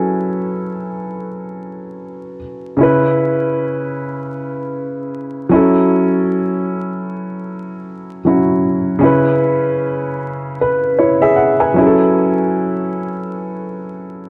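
Hazy and reflective, this free-time hip hop fragment in F# minor, tuned to A4 = 438 Hz, centres on a solo upright piano, woody and intimate with audible action noise, placed up front and coloured by cassette tape and a low-pass filter as it moves between F#m7 and C#m7 over 14.3 seconds, all set in a long, wet plate reverb within a dark production dusted with vinyl crackle.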